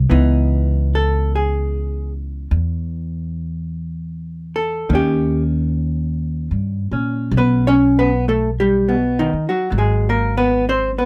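Recorded with close, detailed microphones and light reverb, this intimate, tender jazz ballad excerpt moves at a slow 50 BPM in 4/4 with a gentle swing on the eighths. A dark, clean vintage hollow-body electric guitar sits up front, picking the accompaniment from B2 to C#5 through C#m9, D#7b13 and G#m9. Beside it, a woody pizzicato upright bass with steel strings holds the low end between G#1 and A#2 for the full 11.1 seconds.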